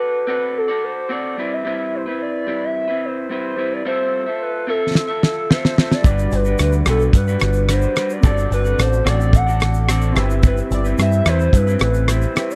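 A damped 1970s-style drum kit sits up front with a fat snare and tight kick, entering with a fill at about 5 seconds and then settling into a laid-back groove of hi-hat, rim click, shaker and snare at 109 BPM in a straight 4/4. From the start, a warbling, nostalgic lead carries the melody, its wave-folded square and sawtooth tones touched with chorus, vibrato and a slapback echo. Beneath it, an electric guitar through a small old amp plays fingered, compressed accompaniment with a dark, slightly broken-up character, shimmering with subtle chorus and a vibrato effect. At 6.0 seconds, a deep, round dub-style picked bass arrives, along with mellow, detuned lo-fi synth keys in the background and a grainy tube shaker. This sunny bedroom-pop excerpt drifts through seventh chords such as D7, Cmaj7/G and Gmaj7, captured as a dry, close studio recording with small-room ambience, and lasts 12.6 seconds as part of a longer piece.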